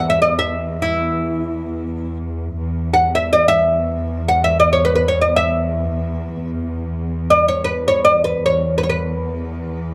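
Arabic maqam ensemble music in free time, this festive fragment sits in E maqam rast. A woody, plectrum-plucked fretless oud with doubled strings carries the melody up front between E4 and F#5, over a dark, lush bowed cello section that holds a smooth E2 drone with vibrato for the full 9.9 seconds. The opening idea returns at 2.6 seconds, and the pair sits in a moderate studio ambience.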